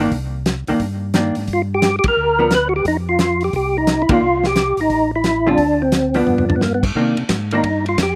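A lightly overdriven, percussive tonewheel organ carries the melody in this bluesy, smoky soul jazz organ trio excerpt, entering at 1.5 seconds with a fat, up-front tone, audible key click, third harmonic percussion, chorus vibrato and a slow rotary speaker. Beneath it, a second tonewheel organ handles the bass line with a mellow, round and clean sound, also shaded by chorus vibrato and slow rotary. A vintage hollow-body electric guitar comps in the mid register, picked and compressed with a shadowy clean tone and a slapback echo. The acoustic drum kit sits dry and up front, with dark cymbals, a fat snare, a tight kick and a rolled-off top, and the band hits accents together, with a drum fill at 6.3 seconds leading into an organ solo at 7.0 seconds. The swung groove moves through minor-ninth, power-chord and dominant-seventh harmonies, and the dry, roomless recording keeps the sound intimate and immediate.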